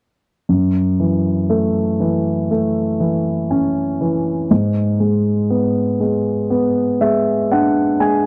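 A grand piano opens at 0.5 seconds, its tone warm and set up front, in this brief folk fragment in F# minor. The tempo is a slow 60 BPM in a straight 4/4, and the mood is intimate and heartbroken. The piano serves as accompaniment, spanning F#2 to G#5 as it rests on an F#m7 chord before moving to G#m7b5 at 4.5 seconds. A light reverb and a touch of studio ambience surround it, yet the sound stays dry and close, in the manner of a 1970s studio recording. The passage is cut from a longer piece and ends at 8.3 seconds.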